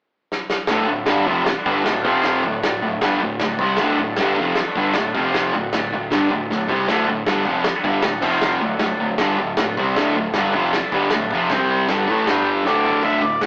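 Rowdy, raw garage rock with a straight 4/4 drive, taken from a longer piece. A double-tracked fuzz guitar sits up front with a bright, distorted riff, while a growling, overdriven picked bass stays in the background and a very quiet, buzzy combo organ holds sustained chords. The vintage drum kit has a punchy kick, medium-tuned snare and dark cymbals with a rolled-off top, and its fills open the track at 0.3 seconds and return at 6.5 and 12.6 seconds. The harmony hammers on D, broken up by brief stabs of F5, then C5 and G5 near the end. A dark octave-fuzz lead guitar appears only in the closing moments. The whole thing has the rough feel of a rehearsal-room take, with a stone room reverb, warm saturation and an AM-radio tone.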